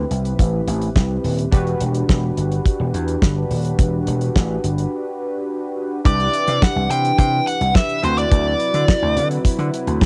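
A lo-fi cassette home recording with light reverb carries this funky, late-night excerpt of early-eighties boogie funk at 106 BPM, where a damped 70s drum kit with a fat snare and tight kick sits up front beside an amped vintage slap bass, under a sawtooth polysynth comp with chorus and plate reverb voicing Am9 and Em7. After a break from 4.9 to 6.1 seconds, the harmony moves to Cmaj9 and D13 as a very quiet, brassy, detuned analog pad arrives. At the same point a dark, overdriven lead guitar with a parked wah takes the melody up front until 9.3 seconds.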